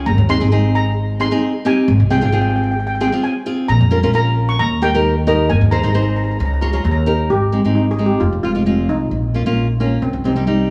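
This short excerpt from a longer calypso piece opens with all three parts together: a lead steel pan carrying the melody over fingerpicked nylon-string guitar and pizzicato upright bass, in a sunny, festive Ab major at 133 BPM in a straight 4/4. The steel pan, struck with hard rubber sticks, has a metallic, shimmering tone as it ranges from C4 up to Db6. Up front in the mix, the classical-style guitar sounds full-bodied, with audible finger squeak. The steel-strung bass, also up front, gives a woody pluck to the low end. The harmony moves from Abadd9 through Fm/Ab, Bbm and Eb, and at 7.3 seconds a new section begins on Abmaj7, heading through Fm and Bbm to close on Cm. A moderate plate reverb and a small room ambience give the sound a gentle glow.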